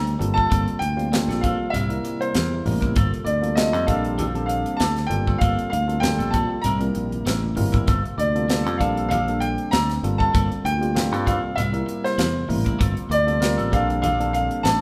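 Electric jazz fusion with a slick, nocturnal mood, this excerpt from a longer piece moves at 98 BPM in 4/4 with a light sixteenth-note swing, circling through Gm11, C7 and Bbmaj13 in G minor. A brilliant, up-front concert grand piano carries the melody high in its range, while a fingered electric bass gives a punchy, amped low end. A tight funk drum kit sits up front with a tight kick and medium-tuned snare, adding a fill around 7.1 seconds, and very quiet congas played with hard hands sit beneath it. A barky tine electric piano played through a combo amp fills in the accompaniment, a clean, twangy electric guitar adds compressed, picked stabs, and a very quiet phased analog pad swirls underneath with detuned, chorused sustained chords. The band sounds as if playing live in one room, washed in a generous large-studio reverb.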